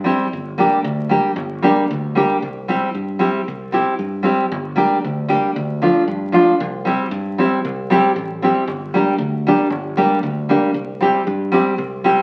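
Heard through the crackle of a very old 78 rpm record and a wet, large studio reverb, this short cut from a longer Balkan wedding-band folk piece feels bittersweet and fiery in a lightly swung 2/4. A full-bodied, fingerpicked nylon-string guitar sits up front with a deep classical tone, carrying the accompaniment through Gm, C and Dm across two repeated passages. Beneath it, a fingered electric bass adds a punchy, direct low end at a much lower level.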